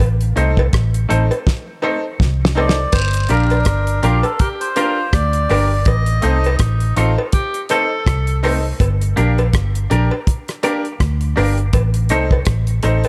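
A round, punchy, foam-muted electric bass sits up front in this hypnotic, serious roots reggae excerpt at 82 BPM with a swung 16th feel, locked with a dry, damped 70s drum kit (fat snare, tight kick, rim click and hi-hat, with a fill around 1.5 seconds) and a band-limited vintage cowbell and jawbone-type rattle, all over a slow alternation of A diminished and G minor. A clean, compressed semi-hollow guitar with phaser and dub echo sits in the background beside brilliant, short-sustained grand piano stabs. A reedy, nasal melodica carries the melody from 2.6 seconds, joined at 3.3 seconds by a clear vintage tenor saxophone playing a scooped second line, both trailing dub echo in a small, lightly reverberant room.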